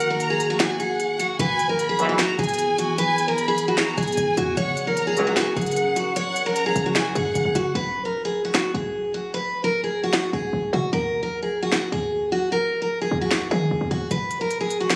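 A bright, full-bodied picked steel-string acoustic guitar carries a wistful yet triumphant melody up front in this half-time trap excerpt, over crisp hats, a sharp snare and handclaps from the drum kit, joined by a punchy 808-style bass at 1.4 seconds, while a lush, distant violin section with tape echo and a glassy, ethereal FM pad hold the opening before dropping out at 7.7 seconds, loose vintage brass stabs land twice, and the whole piece sits in a phone-recorded club reverb.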